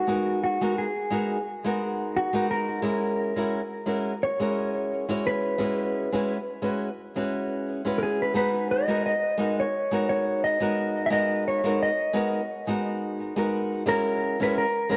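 Chillout in G# minor at 87 BPM with a gently swung 16th feel, this smooth, warm fragment from a longer piece pairs a dark, clean, compressed mellow electric guitar carrying the melody with a bright, fingerpicked flamenco guitar accompaniment whose finger squeaks stay audible, both up front, both treated with tape echo and both playing throughout the 15 seconds over G#m7, F#7 and E6, all set in a lush hall reverb and tuned to A4 = 439 Hz, with the whole recording coloured by worn cassette tape and its warbly pitch drift.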